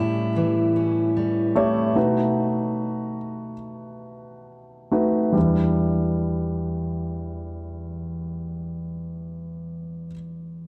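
Longing and heartbroken, this slow pop fragment pairs a warm, short-sustained grand piano accompaniment running to 10.7 seconds with full-bodied fingerpicked steel-string jumbo guitar arpeggios under digital delay that stop at 2.0 seconds, both up front in a dark production bathed in plate reverb, easing back over its opening section before settling from A7 and B7 onto Em7 at 5.4 seconds.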